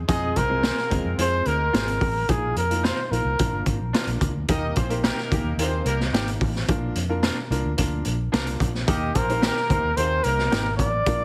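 A dark, round, foam-muted electric bass opens this joyful uptempo 1960s-style soul excerpt at 109 BPM in Eb major, joined almost at once by a gritty, boomy garage drum kit with a high-tuned snare, a smooth, short-sustain grand piano, a jazz-style horn section in octave doubling in the background, and an up-front vibrato trumpet with scooped notes and tape echo that drops out at 3.7 seconds and returns at 8.9 seconds, while twangy, slightly broken-up electric guitar stabs sit further back, the whole mix carrying light reverb and a heavily compressed radio sound.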